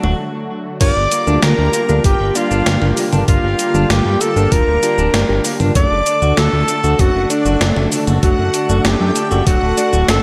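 A light reverb frames this nostalgic, nocturnal synthwave excerpt in G minor at 97 BPM, where a detuned analog pad with chorus and sidechain pumping, a clean electric guitar playing arpeggios with warbly pitch drift and tape echo, a fat, saturated sawtooth bass up front, and a tape-warm gated 80s digital drum machine, re-recorded in a small room, with cabasa, hi-hat, toms, crash and a gated-reverb snare open on a drum fill and a brief break. At 0.8 seconds the harmony settles on Gm7, and a breathy, whispered alto saxophone takes the melody up front with 12-bit sampler grit and delay. Shimmering string-machine violins carry a second line, a clangy electric grand piano adds stabs, and a thumpy, tape-warm electronic kick drives the groove until 9.6 seconds, with the chords moving to D/F# at 5.8 seconds.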